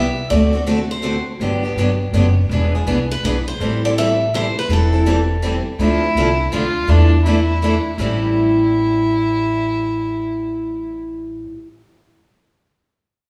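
A live, close small-room recording with a stony reverb opens this fiery, virtuosic gypsy-jazz waltz excerpt, where a bright, boxy picked acoustic guitar carries the melody until 5.4 seconds over two more acoustic guitars picking accompaniment (one up front, one mellow in the background) and a woody, thumpy pizzicato upright bass, before a nasal, reedy bowed violin with period gut-string tone takes up a second line at 5.8 seconds.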